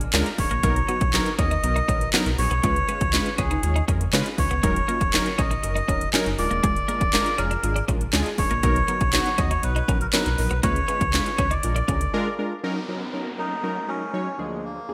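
Bright 1980s-style digital production in a lush hall gives this energetic, confident dance-pop excerpt in Eb minor at 120 BPM its sheen: a punchy, overdriven house kit with cracking snare, metallic hats and handclaps plays alongside a deep sine sub bass and detuned sawtooth analog keys with chorus, both pumping with sidechain, while a clean, compressed twelve-string electric guitar picks a riff in the background and an up-front, reedy melodica carries the tune through digital delay, until drums and bass stop at 12.1 s and, after a brief silence, an electronic downlifter enters at 12.6 s beneath the keys and melodica.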